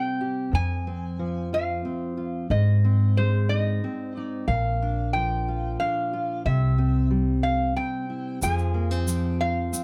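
A metal-body resonator slide guitar carries the melody up front, its nasal, metallic voice played with fingerpicks and a slide, singing in a high register over this reflective, intimate acoustic folk piece at 91 BPM in 3/4, cut from a longer performance in F dorian. Beneath it, a fingerpicked steel-string acoustic guitar supplies a dark, concert-style accompaniment, with a touch of finger squeak audible on the strings. An upright bass enters at 0.5 seconds and sits prominently in the mix, its pizzicato notes woody, growly and thumpy. The harmony moves through Fm, Ab, Bb and C before returning to Fm. At 8.4 seconds, a grainy, bright egg shaker joins quietly in a small-room sound. Close, detailed microphones and light reverb keep the small group sounding present and personal.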